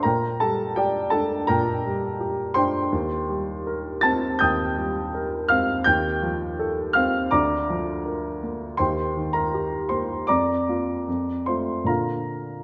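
Passionate and lyrical, this romantic character piece for solo piano moves in a rubato 4/4 at roughly 70-86 BPM in Bb major, spanning D2 to A6 across its 12.6 seconds. The baby grand sounds dark and mellow, sitting up front with a natural tone inside a moderate scoring-stage reverb. Its harmony opens on Gm/Bb, passes through Cm7/Eb and F7/Eb, and settles onto Bb at 11.9 seconds in this fragment of a longer work.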